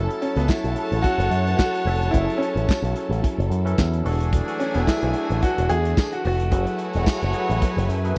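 A tight-kicked soul drum kit with handclaps sits up front beside a punchy, envelope-filtered picked bass in this driving, glamorous disco cut, as a clear grand piano carries the melody over lush, vibrato-rich violins, distant symphonic strings holding sustained chords, roomy horn stabs, a barky, lightly overdriven tine electric piano that adds a fill at 7.6 seconds, a dark, very quiet fingered electric guitar and a jingly background tambourine, captured in a dry, close 1970s-style studio sound.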